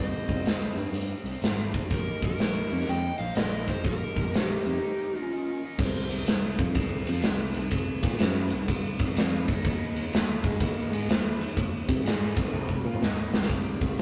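A swung 4/4 groove at 124 BPM drives this gritty, brooding blues rock and southern rock cut from a longer piece, set in C minor. A big acoustic rock kit sits up front from 0.3 seconds, with a punchy kick, a medium-tuned snare, hi-hat, toms, and bright crash and ride cymbals ringing in a big room, capped by a drum fill at 12.5 seconds. Underneath, a picked electric bass growls low, while a biting, double-tracked overdriven guitar churns out the riff in the background over Cm and Eb/Bb, shifting to power-chord movement between Eb5 and C5 later on. For the opening 5.6 seconds, a warm overdriven slide guitar, fingered, carries the melody alongside a dark, picked second line from a lead guitar through a small cranked amp tucked in the background. After a brief break, the trio pushes on, and the whole take has the rough edge of a rehearsal-room recording with tube saturation and a light touch of reverb.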